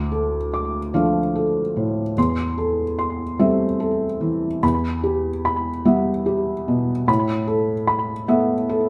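Intimate and wistful, this short passage of neoclassical minimalist piano drifts in a lilting triple feel with a free, rubato pulse. A felt-muted upright piano plays alone from start to finish, its soft, mellow tone carrying the faint clicks and thumps of its action close to the ear. The piano spans a broad register from deep bass to high treble, and a slapback echo trails each note with a quick repeat. The harmony moves from D minor through C6 over E and E minor before resting on an A suspended second chord near 7.1 seconds. A small, wet studio reverb gives the up-front piano a touch of room around it in this fragment of a longer piece.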